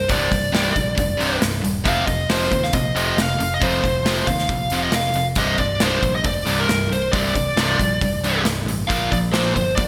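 A menacing, driving hard rock passage opens with a dark, distorted bluesy lead guitar up front, over a hollow-bodied overdriven semi-hollow guitar riff with subtle chorus, a distorted electric guitar riffing in the background and a growly, punchy picked bass moving through Csus2, F5 and Bb5, as a big rock drum kit with a medium-tuned snare and gated reverb joins at 0.1 seconds, the whole mix set in a lush hall with a bright 1980s-style digital sheen.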